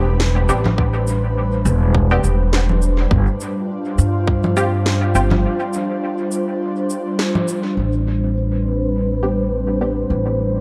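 Deep, spacious ambient dub with a gentle swing, built on a thumpy, gut-strung upright bass and an airy, breathy pad holding Am11 and G7sus4, while muted dub chord stabs echo through chorus. An overdriven tight kick drops out at 4.4 seconds, and a woody filtered snare with cabasa and congas carries on through a break from 5.4 seconds. A very quiet bubbling texture surfaces at 8.7 seconds as a filter sweeps the pad, all set in a moderate spring reverb.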